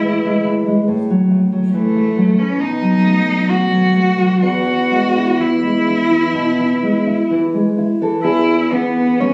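A rich, bowed cello and a thumb-plucked nylon-string classical guitar open together in this tender romantic duo fragment in E major, moving with rubato at 60-72 BPM in 4/4: the cello sings the melody up front with vibrato, portamento and a soft attack under a slapback echo, while the guitar's warm accompaniment passes through E/A, F#m7/A and B7 to E before a new section begins at 8.2 s, all captured on a phone in the room with moderate spring reverb and compression.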